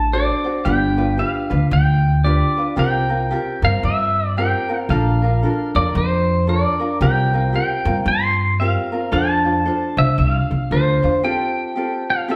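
Recorded live by a band in a stone room with a wet reverb, this sunny, relaxed swung Hawaiian cut features a bright, twangy electric pedal steel guitar playing the melody up front with fingerpicks, slide and volume swells, over a light, fingerpicked acoustic ukulele and a woody, thumpy pizzicato upright bass on gut strings that drops out at 11.2 seconds, leaving the steel and ukulele to close on a brief new section.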